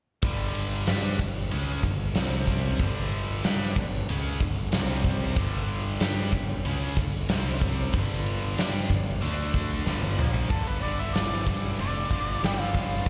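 Raunchy and swaggering, this short cut from a longer live set blends blues rock power trio grit with southern rock at 94 BPM in a straight 4/4. A tight, bright, double-tracked distorted guitar picks out a riff over power chords that circle G5 and C5, touching D5 before returning to G5. Beneath it, a growly, overdriven fuzz bass sits up front, while a huge arena drum kit with a punchy kick, fat snare, bright cymbals, ride and toms drives the groove from 0.2 seconds. A drum fill at 9.9 seconds hands off to an octave-fuzz lead guitar solo at 10.5 seconds, its dark, picked tone colored by slapback echo and digital delay. The sound carries the feel of a gig heard through a venue's PA, with light reverb, small room ambience and a recital hall tail.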